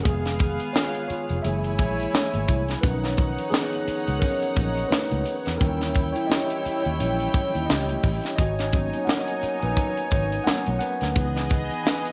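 A lo-fi home cassette sound with light small-room reverb and a dulled top gives this 12-second cut from a longer lush 1970s-style soul piece its smooth, warm mood at 86 BPM in 4/4, with a 16th-note swing. A mellow tine electric piano, heard through its built-in speakers, takes a solo across the whole span over chords moving from Fm7b5 through Bmaj9#11 to C#m9, while a reedy, gut-string studio string section sits up front as the second line. Underneath, a tight funk drum kit with a high-tuned snare, a dark, foam-muted fingered electric bass that stops at 11.7 seconds, thick-skinned congas and a jingly, saturated tambourine keep the groove, the last two very quiet.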